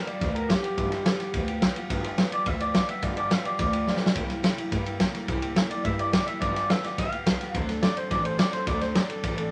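Rowdy and upbeat, this rockabilly excerpt charges along at 213 BPM in a straight 4/4, sitting in G mixolydian. A twangy electric guitar through a small old amp carries the melody with a bright, slightly broken-up edge and a shimmering tremolo, while a picked steel-string acoustic guitar with a boxy parlour tone and fresh strings fills in the accompaniment beneath it. An upright bass, played pizzicato on gut strings, gives a woody, thumpy low end, and a vintage drum kit sits up front with a punchy kick, medium-tuned snare and ride cymbal, its top end rolled off for a natural studio-room feel. The chords move from G7 to C7 at 4.2 seconds, back to G7, then to D7 at 7.5 seconds, with a drum fill arriving at 3.9 seconds. Light reverb adds a touch of space to the performance.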